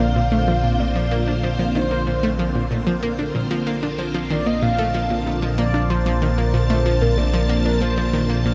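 Soaked in a huge ambient reverb with a dreamy cassette-tape haze, this luminous, expansive fragment of sequencer-driven space music sits on a single sustained Bbadd9 chord, where a fat, detuned analog bass holds up front beneath a round, wave-folded analog pluck riff with chorus and delay, a swirling vintage string machine with ensemble chorus and phaser carries the sustained chords, and a mellow, horn-like synth lead with vibrato sings the melody through its own chorus and delay until it drops out at 8.3 seconds.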